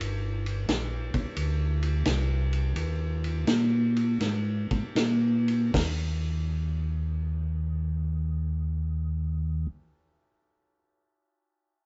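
Greasy and swinging, this short soul jazz organ trio excerpt pairs a round, mellow tonewheel organ carrying the bass line with chorus vibrato, key click and a slow rotary speaker, over a gritty, saturated vintage drum kit with dark cymbals, a tight kick, hi-hat, ride and snare that drops out at 6.0 seconds, all captured live in one room with light reverb and a rolled-off top as the groove slows down through the opening 5.7 seconds.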